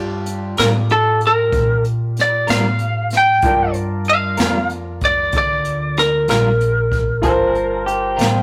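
A rough rehearsal-room recording with light reverb and warm saturation carries this smoky, mournful slow blues in 12/8, cut from a longer piece. A clear, slightly detuned upright piano and a woody, growly upright bass open over a Gm7 chord. A jazz kit played with brushes enters at 0.3 s. From 0.6 s, a bright, twangy, lightly driven lead guitar sings the up-front melody over a picked electric guitar at the edge of break-up with tremolo. At 7.2 s, a lo-fi, compressed guitar through a small old amp adds a second line with tape echo.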